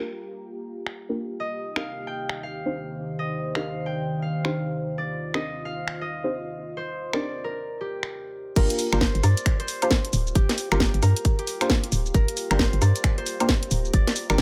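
A hollow, bouncy FM bass with tube saturation and sidechain pumping arrives with a tight electronic kick at the drop at 8.6 seconds in this skippy, soulful two-step UK garage cut at 134 BPM, where a ringing, fingerpicked concert harp carries the melody with vintage 12-bit sampler grit over warbling, detuned chord stabs, a deep, moody ambient pad with built-in reverb and a soft, breathy pad in the background, the harmony moving from Gm7 to Cm9, while a filter sweep on the stabs and a pad leads into a brief stop at 8.1 seconds, and a tape-warm garage kit of cracking snare, finger snaps, hi-hat, shaker, woodblock and crash cymbal, its snare, hats, cymbals and percussion low-pass filtered, swings from 0.9 seconds under light digital ambience.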